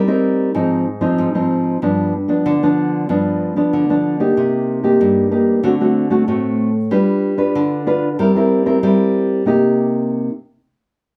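A solo nylon-string guitar carries this brief samba cut from a longer piece, its dark, thumb-plucked classical tone sitting up front in a small room with moderate reverb. The mood is lively yet bittersweet, moving at 94 BPM in a straight 4/4 feel in C minor. The guitar ranges from G2 up to B4, opening on Cm7/G and passing through Fm7/Ab and G7 before a new section begins at 4.4 seconds on Cm7. From there the harmony travels through D7, G7 and C7/G, settling back on Cm7 at 9.5 seconds as a final short section starts. The guitar falls silent at 10.3 seconds.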